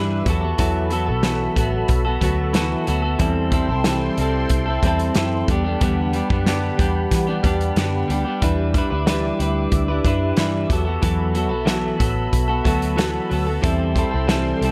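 A light reverb and the ambience of a studio frame this wistful, lonely fragment of indie and bedroom pop, cut from a longer piece and moving at 92 BPM in a straight 4/4. A clean, picked electric guitar sits up front with a compressed, warm tone, coloured by lush chorus and a vibrato effect as it carries the accompaniment. Beneath it, a vintage muted picked electric bass sounds dark, round and punchy, its foam-muted, amped tone anchoring the low end. A loose indie drum kit joins at 0.3 seconds, with hi-hat, a medium-tuned snare and a punchy kick, all heard in a small acoustic room. In the background, a phased analog pad holds sustained chords, its detuned sawtooth voice swirling and evolving through phaser and chorus with a slow attack and long release. The harmony drifts from B7sus4 to Am7 and on to Gmaj7/E before circling back through B7sus4 and Am7, giving the brief passage an unresolved, searching quality.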